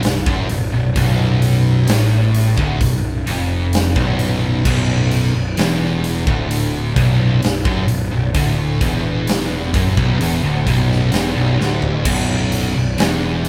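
A short cut from a slow, hypnotic stoner and doom metal piece in B minor at 65 BPM opens with the full band playing live in one room at once: two dark, thick fuzz guitars and a bright, double-tracked overdriven guitar grind out a low riff on a Bm chord, with a fuzzed, overdriven picked bass beneath them. A big acoustic rock kit sits up front with a punchy kick, medium-tuned snare, bright cymbals and toms, while the guitars and bass sit further back under light reverb. A drum fill from 11.6 to 12.1 seconds leads into the riff's return, where the harmony drops out for the final moments of the heavy passage.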